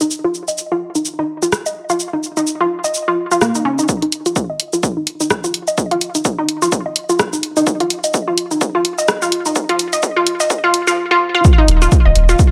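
Clinical and sparse, this minimal techno excerpt runs at 127 BPM in 4/4 with a 58% swing on the sixteenths. A resonant blip pluck carries the riff from the start, its juicy, squelchy square-and-saw tone layered with noise and a sub octave, dressed in chorus and delay, pumping against the sidechain and shaped by a filter sweep. A punchy, tape-warm analog drum machine sits up front throughout with hi-hat, rim click and shaker, and an electronic kick joins at 3.9 seconds, opening a build-up over an Ebsus2 chord. Shortly after the drop at 11.4 seconds, a deep, thick, saturated sub bass arrives briefly at 11.7 seconds on a low Eb, sustained and pumping beneath the pluck. A moderate studio reverb with a 0.7-second decay frames the space.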